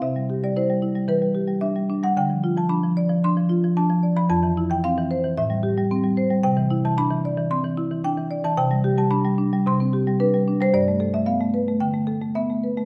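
Contemporary classical music for solo marimba, this flowing, warm passage is cut from a longer piece and moves in a rubato 4/4. The marimba, played with medium mallets on padauk bars, carries everything alone from 0.0 to 12.9 seconds across a span from F2 to C6. Its woody, warm tone sits up front with a boxy, small-room character, set inside a moderate recital hall reverb. The harmony drifts through seventh and extended chords, from C and Em7 through Dm7 and Am7 to a Cmaj9 at 6.4 seconds, a rootless Am11/C, and a closing G9. The overall effect is flowing and warm, the chords unfolding smoothly on the single instrument.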